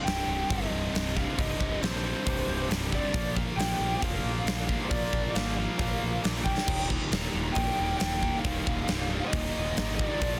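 A straight 4/4 pulse at 136 BPM drives this menacing, heavy hard rock excerpt, cut from a longer piece and built over Cm, Bb and Eb. A huge arena drum kit sits up front with a punchy kick, medium-tuned snare, hi-hat and bright crash cymbal in a pumping hall sound, breaking into a fill at 6.5 seconds. Beneath it a picked electric bass growls low, direct and amped with a punchy edge. Three overdriven guitars stack the riff in the background: two distorted electric guitars with a bright tone, one of them double-tracked, and a biting guitar with a warm tone. Over them a lead guitar through a small cranked amp carries the melody with a dark, lo-fi grit, all set in light studio reverb within a dense, heavily limited modern master.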